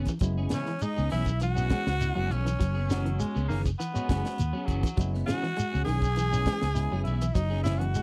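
A tight, dry funk drum kit sets a straight 4/4 afrobeat groove at 101 BPM, with a high-tuned snare, tight kick and hi-hat, while a grainy shekere adds a mellow layer of texture. Underneath, a round, dark fingered electric bass sits up front on a single F#9sus4 chord, giving this short, joyful, funky cut from a longer piece its weight. Two slightly broken-up electric guitars share the rhythm work: one plays chorused stabs in the background with a fingered touch, the other bright, picked, twangy arpeggios coloured by spring reverb and slapback echo, with a barky, clean tine electric piano adding accompaniment behind them. From 0.5 seconds a raspy, gritty tenor saxophone carries the melody close-miked with vibrato and scooped notes, shadowed by a distant, roomy trumpet playing a soft second line high above. Between 2.9 and 5.1 seconds a forceful, vintage-sounding baritone saxophone joins with its own raspy second line, all captured in a close, dry 1970s-style studio sound.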